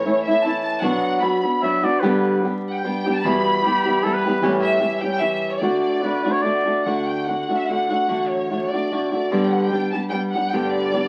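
Romantic and festive, this short mariachi passage in D major moves in 3/4 at 149 BPM with a rubato feel, cut from a longer piece. A lush, bowed violin section carries the melody up front, its focused ensemble tone rich with vibrato and a smooth top. A fingerpicked flamenco guitar with fresh strings sits equally forward, supplying acoustic accompaniment from the start. An upright bass enters at 0.8 seconds, its woody, thumpy pizzicato tucked in the background, while a clear, classical-style trumpet adds a solo second line with light vibrato from 1.6 to 6.9 seconds. The harmony moves through A, Bm, G, Em and A7 to D, returning to G near the close. Wet studio reverb surrounds the ensemble, and the whole sound carries the crackle of a very old 78 rpm record.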